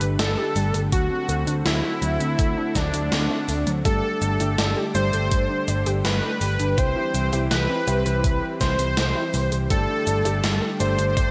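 A bold, bright unison sawtooth lead sits up front, carrying the melody with vibrato through cassette tape coloring, delay and shimmer reverb in this uplifting, romantic synthwave excerpt. Beneath it, a very quiet, dreamy FM electric piano with a soft pad layer traces a second line, while a lush, thick unison pad holds sustained chords in the background with chorus, sidechain pumping and shimmer reverb. A lo-fi, dusty pluck adds warbling arpeggios with chorus, tape echo and shimmer reverb, and a picked electric bass gives an amped low end. A gated 80s digital drum machine plays cabasa, hi-hat and an overdriven snare drenched in gated reverb, joined at 0.9 seconds by a thumpy, overdriven electronic kick that sounds re-recorded in a small room. From 3.9 seconds a dark, boxy concert grand piano adds mellow stabs with shimmer reverb, as the harmony moves from Gsus2 to D7, back to Gsus2, on to C and then returns to Gsus2.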